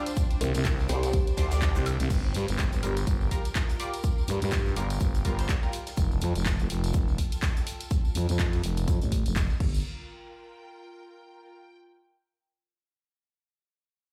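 Bass house at 124 BPM in G minor with a swung 16th feel, gritty and aggressive, opening on a drop where a deep, moody analog pad and a nasal, band-passed chord stab with phaser, chorus, delay and sidechain pumping ride over a punchy, up-front electronic kick, a tape-toned house kit of crash, handclaps, hi-hat and woodblock, a jingly tambourine, and a gated 80s kit with an airy snare, hi-hat and shaker in the background. A growling FM bass enters at 0.4 s alongside a brief woody kalimba figure, and a detuned, overdriven formant-sweep wobble bass appears briefly. Once the pad stops at 2.1 s, the FM bass takes a filter sweep while a smooth, pumping symphonic string section fades into the distance, all played back on a big system in a bare room under large studio reverb.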